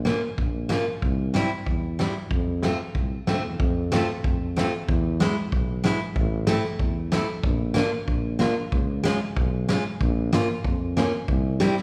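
A reverberant recital-hall space sets this short cut from a longer piece a little further back in the room, giving a festive, bouncy alpine folk dance band tune at 94 BPM in a straight 2/4 an airy glow. A mellow tuba with a soft attack carries the bass line in a classical style from the very start, sitting low between A1 and F2. From 0.1 seconds a bright, full-bodied picked steel-string dreadnought guitar plays the accompaniment up front, its fresh strings ringing clearly in the middle register. A loose drum kit enters at the same moment with a punchy kick, a fat snare and hi-hat, its studio-room sound mid-forward and rolled off at the top. In F major, the harmony wanders colourfully through chords such as Bbm, C, F, E, Am and Db across two passes of the same section, the second beginning at 3.6 seconds.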